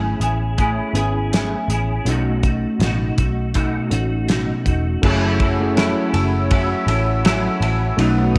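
A clean, hollow-body electric guitar with ensemble chorus and a warbly pitch drift sits up front in this mellow, lonely stretch of indie bedroom pop at 81 BPM in 4/4, lightly swung on the 16ths in F# dorian, moving from Amaj7 to B7 and then to F#m7. A reedy, worn, slightly out-of-tune electric piano with fast tremolo sits lower in the mix. A round, foam-muted picked bass plays from the start, and a cloth-damped kit enters at 0.2 seconds with a fat snare, tight kick, dark cymbals and a saturated, gritty, rolled-off top. At 5.0 seconds an airy, flute-like pad with chorus and a slow attack enters, all held in light small-room reverb.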